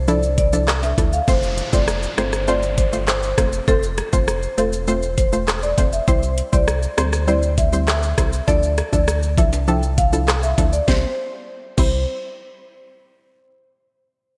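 The island pop drum kit stands out most, sitting up front with a knocking kick, sharp snare, metallic hi-hat, rim clicks, handclaps, shaker and crash cymbal, all roughened by vintage 12-bit sampler grit and a gated reverb. This bouncy, sunny dancehall excerpt moves at 100 BPM in a straight 4/4 in C major, with a deep, full sub bass doubled at the octave holding down the low end. A marimba played with medium mallets carries the melody in a dark, smooth tone trailed by digital delay, while punchy chord stabs with a detuned, wave-folded bite and chorus fill in the harmony. Maracas and timbales add compressed, saturated color in the background, and an electronic downlifter sweeps through from 1.3 to 6.1 seconds as the chords move from Dmadd9 through F and C. The whole mix has a bright 1980s-style digital sheen with a lush hall reverb around it.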